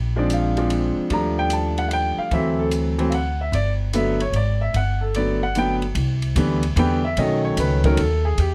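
Swinging in 3/4 at 149 BPM, this playful, warm jazz piano trio excerpt opens with a growly pizzicato upright bass on steel strings at 0.0 s, soon joined by a clear, woody upright piano with long sustain and a vintage tone carrying the melody from 0.2 s, and a compact cocktail kit of hi-hat, ride cymbal and punchy kick, dark with a rolled-off top and mixed quieter than the other parts from 0.3 s, set in light reverb as the harmony moves from Bb9 through Ebmaj9#11 and D7 to Gmaj9 before turning to Cmaj7 and B7.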